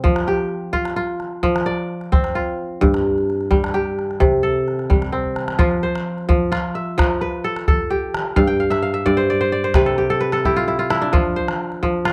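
West African traditional music with a hypnotic, joyful lilt at 87 BPM in 12/8 and F lydian, in which a crisp, ringing, fingerpicked kora plays up-front arpeggios while a deep calabash sounds distant, as if in a large room, beneath a dark production, with a short drum fill from 5.2 to 5.6 seconds and a kora fill from 8.4 to 11.1 seconds in this fragment cut from a longer piece.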